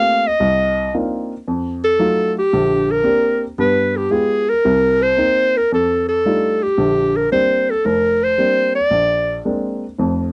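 A dry, close 1970s-style studio sound with light reverb frames this warm, swinging jazz fragment in Bb major at 113 BPM, cut from a longer piece and built from two passes through the same section. Up front, a clear, punchy clarinet carries the melody with vibrato and scooped notes, forceful and present in a jazz solo style. Beneath it, a dark, mellow baby grand gives intimate accompaniment with short sustain and audible action noise, moving through chords like Cm11, F7b9 and Bb69, and it plays alone from 9.4 s until the close at 10.3 s.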